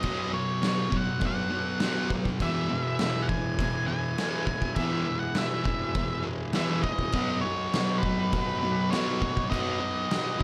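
Garage rock with a raw, swaggering mood at 101 BPM in E major, where a thick, double-tracked fuzz guitar riff sits up front beside an oversized, low-tuned acoustic drum kit with a punchy kick and saturated, gritty sound in a bright stone room, a dark octave-fuzz lead guitar carries the melody through plate reverb, and a reedy vintage combo organ holds clean sustained chords in the background from 2.4 seconds as the harmony moves from B5 to E to B.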